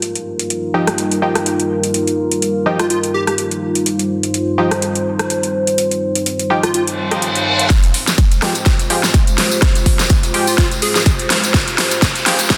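A dark, moody pad with chorus, phaser and sidechain pumping opens this aggressive, gritty bass house passage at 125 BPM in F minor, over an overdriven big-room kit with a huge snare and metallic hats, while a nasal, band-passed chord stab with 12-bit grit and delay joins at 0.7 seconds. A bright, plucky unison lead flickers in brief delayed phrases, and a reverse cymbal and riser from 6.9 seconds lead into a build-up with a drum fill and filter sweep. From 7.7 seconds a punchy overdriven kick pushes up front, joined by a jingly tambourine and a very quiet dusty sampler-style kit with a fat snare, all within lush hall reverb and a dense, heavily limited master.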